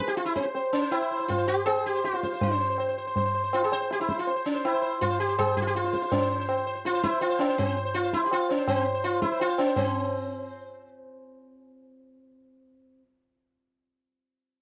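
A bright, buzzing sitar sounds first, shimmering with sympathetic strings and sitting up front as it carries the melody in raga Bhairav on C, while a high-tuned, ringing tabla joins at 0.1 seconds and drops out near 9.9 seconds, the dry, close 1970s-style studio sound giving this meditative, serene Hindustani excerpt in 5/4 at 163 BPM a quickening pace through a new section at 9.8 seconds before the sitar finishes alone at 13.0 seconds.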